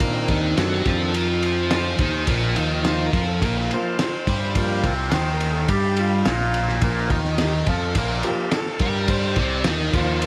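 Hypnotic and mysterious, this short psychedelic rock excerpt moves at 106 BPM in a straight 4/4, cut from a longer piece. A reedy tonewheel organ carries a solo across the whole 10.3 seconds, its sustained chords colored by slow rotary speaker, light overdrive and audible key click. Alongside it, a thick, double-tracked fuzz guitar plays a picked, distorted riff through a phaser, sitting up front in the mix. A fingered electric bass adds a growly, overdriven low end, while a cloth-damped drum kit of kick, snare and ride thuds along with a fat snare, tight kick and dark, muffled cymbals, its lo-fi, rolled-off sound suggesting a small room. The harmony shifts from Cmadd9 to Bb5 at 2.3 seconds, and a light studio reverb ties the parts together.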